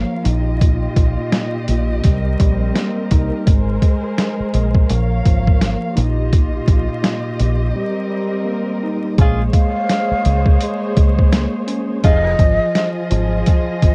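Compressed, pitched-down sampler drums with a thumpy kick and 12-bit grit lead this tough, gritty boom-bap hip-hop fragment alongside a round, punchy dub bass up front, over a clean tine electric piano and veiled, muted strings on cassette, before soft horn stabs arrive at 9.2 seconds and a breathy, mellow flute melody with tape echo enters at 9.5 seconds, all within a home-cassette sound dusted with vinyl crackle.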